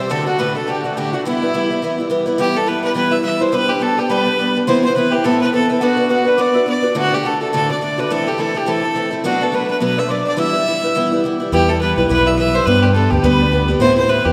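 Drenched in the long, wet reverb of a church or concert hall, this driving, wild Celtic folk excerpt swings its eighths in 4/4. A biting, nasal fiddle with light vibrato and an airy bow carries the melody up front over the accompaniment of a bright, shimmering picked twelve-string guitar with octave-doubled strings, while a reedy, mellow accordion plays a second line in the background. At 11.5 seconds a growly fretless electric bass enters up front, adding a direct, amped low end.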